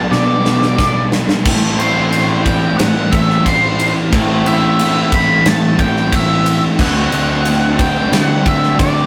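A straight 4/4 pulse opens on a drum fill from 0.1 to 1.5 seconds, played on a huge, up-front arena kit with punchy kick, medium-tuned snare, bright crash and ride cymbals and a pumping hall sound, while a jingly tambourine taps in very quietly at 0.8 seconds. This hazy, dreamy shoegaze and dream pop fragment layers a dark octave-fuzz lead guitar melody over a raw overdriven garage guitar riff, a thick fuzz guitar riff sitting in the background, and an overdriven, fuzzy picked electric bass, with a very quiet vintage string machine adding slow-attack, chorused viola chords that move from Bm7 to Am11 and then D7. The whole fragment has the rough feel of a rehearsal room, with saturated tone and a short, wet small-room reverb.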